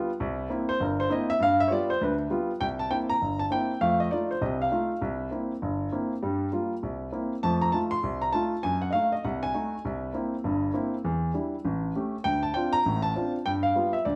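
A brisk swung 4/4 at 199 BPM drives this sophisticated, warm jazz fragment in C mixolydian, cut from a longer piece, where a solo grand piano, intimate and up front with audible action noise, moves through dominant-seventh changes such as C7, F7 and G7 across its 14.2 seconds, set in a live stone room with a wet reverb.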